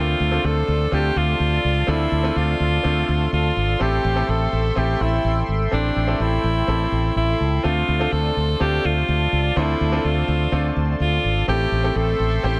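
Pop with a nostalgic, moody feel, this short cut from a longer piece moves in a straight 4/4 over a slow alternation of Dm7 and Am7. A bright alto saxophone carries the melody up front in a pop style, its vibrato trailed by a touch of delay. Underneath, a concert grand piano plays accompaniment with a brilliant, polished tone and short sustain. A chorused pulse-width pad holds sustained chords in the background, shimmering and retro with a slow attack and a mellow edge. A punchy fretless electric bass sits direct and amped near the front, all of it set in light reverb and small room ambience.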